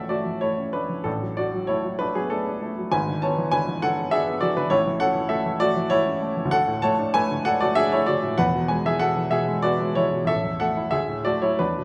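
A woody upright piano opens on an A major chord and carries this romantic character piece entirely on its own, from 0.0 to 11.8 seconds. The mood is hopeful and passionate, set in 3/4 at 98 BPM, with rubato that lets the beats stretch and give unevenly. The instrument sounds polished and present, placed up front, with a short sustain on each note and a range reaching from E1 down low to A5 above. The harmony moves through D over A, E7 over G#, back to A, then D and E, touching A5 near 10.3 seconds before turning to D at the close. A wet recital hall reverb surrounds the playing, and the piano is tuned to A4 = 441 Hz, in a passage cut from a longer piece.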